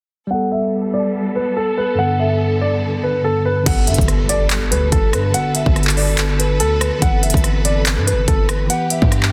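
A heavy-kicked, layered techno drum kit sits up front with a large-room character and smooth hats, arriving at 3.7 seconds alongside a distorted, aggressive 808-style bass and a very quiet electronic impact in this wistful, dreamy half-time trap cut from a longer piece. Before that, from 0.3 seconds, a filter sweep runs while a dark, mellow, worn baby grand piano carries the melody with long sustain and tape echo. A bright, clean tine electric piano and a distant, bowed string section with vibrato and portamento fill in the chords, moving from Gadd9 through Bm7/G and Amadd9 to Em in a dry, dense, heavily limited modern mix.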